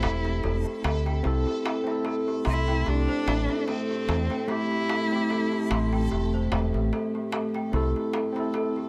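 Trip hop at 74 BPM in A minor with a gentle 16th-note swing, this brooding, smoky passage from a longer piece moves between Am7 and C6 as a dark, bowed cello sings a close, expressive vibrato-laden melody through tape echo until 6.1 s, a clean tine electric piano shimmers with tremolo through a combo amp, and a worn, bell-like celesta that is slightly out of tune ripples delicate arpeggios through delay, all over a round, up-front dub fingered bass that plays until 7.9 s, a crisp, saturated metal-shell darbuka, a reversed, granular backwards swelling texture, and a detuned, wave-folded analog pad that slowly rises into the background at 1.2 s, all in a light reverb.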